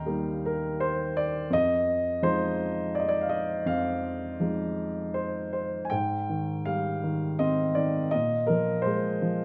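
A dark baby grand piano opens alone on an Eb chord, moving to Fm7 at 1.5 seconds in this short classical passage cut from a longer piece. The mood is melancholic and wistful, set in F dorian at 82 BPM in 3/4, with a rubato feel that lets the time breathe. The solo piano sits up front, its mellow, vintage tone ranging from Eb2 to Bb5 and carried by long sustain. At 5.9 seconds a new section begins on Abmaj7, settling onto Bb7sus4 near the close. A moderate recital hall reverb surrounds the playing, giving the lyrical lines a gentle sense of space.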